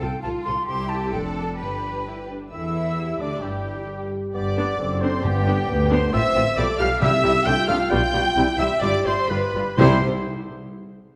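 Set in a straight, quick 2/4, this cheerful, lively classical-period orchestral movement, cut from a longer piece, opens with a rich, focused violin section carrying the melody over an airy metal flute, lush background violins, smooth violas, even cellos, bowed double basses and articulate hard-mallet timpani on calf heads, before a very quiet clarinet and oboe, a background bassoon, a close-miked French horn section holding sustained chords and a distant, clear trumpet playing stabs join at 2.5 s, heard in a wet concert-hall reverb.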